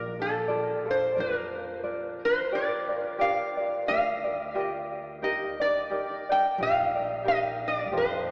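Sunny and dreamy, this brief Hawaiian fragment, cut from a longer piece, sways with a gentle swing as a bright, metallic, nasal resonator slide guitar, played with fingerpicks, carries the melody up front. A light, thumb-plucked tenor ukulele plays the accompaniment close behind, while a woody pizzicato upright bass sits low beneath them, all three playing together for the full 8.3 seconds over mellow seventh-chord harmony. A soaking cathedral reverb surrounds the trio with a long, churchlike tail, though the overall sound comes across as if heard through a small speaker.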